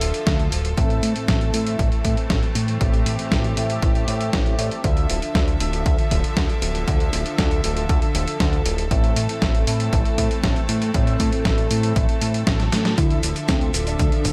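Italo disco in D minor at 118 BPM, this short excerpt cut from a longer piece carries a nostalgic, bittersweet mood over a straight 4/4 pulse, its harmony moving between Dmadd9 and Am. A fat, thick analog bass with a detuned sawtooth edge anchors the low end, while a punchy electronic kick enters at 0.3 s and sits forward in the mix. A gritty, overdriven sampler-style kit adds cabasa, hi-hat and a medium-tuned snare, and a drum fill at 12.6 s leads into the return of Dmadd9. Above, a bright, biting symphonic string section holds sustained chords from a distant vantage, and mellow, round synth brass with chorus and delay punctuates the harmony with stabs. At 13.0 s a bold unison lead with vibrato and its own ensemble chorus and delay arrives with a brief melody, all in a dry mix with little reverb.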